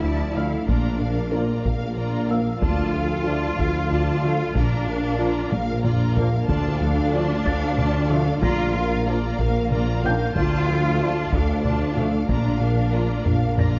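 A dark, warm mix set in a moderate scoring-stage reverb opens this tense, vast stretch of hybrid orchestral and electronic film score, moving in a slow 6/8 at 62 BPM (dotted quarters) in D minor as the harmony rocks between Dm and Bb. A barely audible sub drop and reverse cymbal mark the opening impact, and a close, dry taiko ensemble with heavy sticks enters at 0.7 s, adding drum fills around 5.5 and 13.3 seconds. The low end is thick: a round analog bass riff rides above a mellow tuba, a distant double bass section and a lush, close cello section. Two violin sections carry a smooth-topped melody and a second line in the background, with a viola section using portamento in the accompaniment, while a very quiet French horn section and trombone section hold sustained chords from 0.4 to 13.1 seconds. Glassy, ethereal FM pad chords, a ringing harp-like synth pluck playing arpeggios, and a felt-muted upright piano with delay add a soft, intimate shimmer to the texture.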